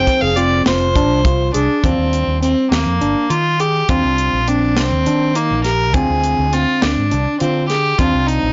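Set in a straight 7/8 at 205 BPM counted in eighths, this short cut from a longer progressive instrumental piece in Eb major feels bright and intricate. A rich, earthy violin with light vibrato and a smooth top carries the melody up front from start to finish, ranging from Bb3 to G5, while a pure, close-miked wooden baroque flute with vibrato and a crisp attack adds an expressive second line through a delay, only until 1.5 seconds. A worn, slightly out-of-tune tine electric piano plays clean arpeggios through its built-in speakers, and a dark, fingered hollow-body jazz guitar sits in the background as accompaniment. Underneath, a round, amped fretless electric bass stands up front, and a dry, tight funk drum kit with a medium-tuned snare, hi-hat and tight kick plays from 0.1 to 8.4 seconds. The harmony opens on Fm, then moves to Bbadd9/Eb at 1.8 seconds, Ebadd9 at 3.9 seconds and Dm7b5 at 5.9 seconds, before returning to Ebadd9 at 8.0 seconds. 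The whole recording is blown-out and overdriven, dull at the top end, and set in a moderate studio reverb.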